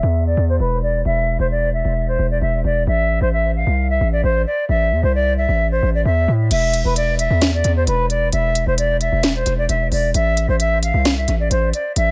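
A half-time trap groove at 132 BPM drives this brooding, hard-hitting hip hop excerpt. The distorted 808-style bass, saturated and heavy with a noise layer, runs throughout beneath an airy, straight-toned silver concert flute melody that sits distant behind a low-pass filter and dub echo, moving between Cadd9/E and Am. At 6.5 seconds the electronic trap drum kit arrives up front with a sharp snare, crisp hats and crash cymbal, its dub echo adding to an echo-heavy mix in light reverb.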